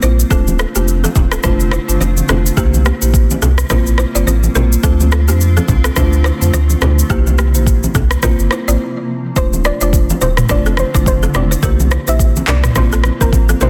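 Afrobeats with a smooth, hypnotic sway and a swung sixteenth feel, built on a deep, up-front sub bass and an electronic afro-pop kit of handclaps, kick, rim click, shaker and toms, with background congas entering at 0.5 s. Woody marimba and a buzzing, close-miked balafon riff with tape echo play over a blurred, evolving granular pad that sits in the background, cycling through Dm7, C7 and Bbsus2. After a short break at 8.8 s, a soft, round, dark pluck melody with chorus and tape echo arrives at 9.4 s in this dense, heavily limited modern mix.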